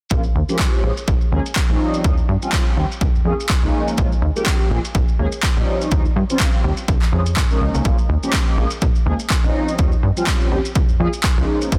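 A punchy electronic kick sits up front in this groovy, funky slice of filtered disco house, joined by overdriven analog handclaps from 0.6 s to 11.3 s and a soft layer of acoustic maracas, all riding a gently swung 16th-note feel. Underneath, a plucky analog bass with a fast, decaying attack pumps through sidechain compression and a low-pass filter. A mellow, round synth brass, detuned and dark with chorus, phaser and vibrato, sustains Bbm7, Eb13 and Db69 chords in a dense, heavily limited mix with light reverb.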